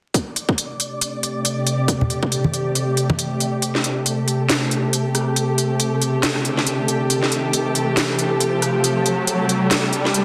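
A dense, heavily limited mix sits in a wet digital room with vinyl crackle, framing a dark, meditative slice of half-time deep dubstep with a swung feel. A tense, string-like bowed drone holds sustained Am7 chords up front under a filter sweep, while a faint flickering, granular texture hovers above, and a tight electronic kick joins a garage kit of cracking snare, rim click and crisp hats that carries on after the kick drops out at 3.2 s. Close acoustic congas with dub echo appear briefly from 2.0 s, and from 5.8 s an electronic riser pushes the build-up through to the end of this cut from a longer piece.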